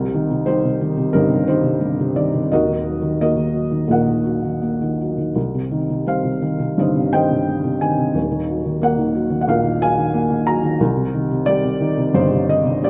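A felt-muted upright piano sits up front in a moderate concert hall reverb, its tone soft, dark and intimate under a thick layer of felt. This short excerpt, cut from a longer classical piece, is a lyrical solo piano passage in C minor and 4/4, moving with a rubato feel at roughly 79-91 BPM. Despite the minor key, the mood is relaxed and sunny, and the mellow, natural sound of the instrument keeps it close and unhurried. The harmony shifts between C minor and E-flat minor, touching an E-flat minor add9 chord at 8.2 seconds before settling back on C minor at 10.8 seconds. The piano spans from Eb1 to Bb5 and plays alone for the full 12.9 seconds.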